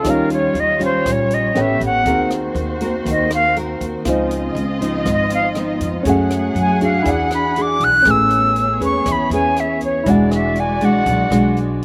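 Bossa nova at 120 BPM in a breezy, relaxed mood, this short excerpt in Db major shifting to A major at 8.1 s features an airy, reedy jazz flute soloing up front with vibrato, over fingerpicked classical nylon-string guitar with audible finger squeak and a slapback echo, a baby grand piano sitting in the background, a veiled, con sordino string section holding lush bowed chords at a distance, a woody, thumpy pizzicato upright bass, and an acoustic drum kit with a boomy kick, hi-hat and rim click, all captured dry with little reverb and tuned slightly flat to A4 = 437 Hz.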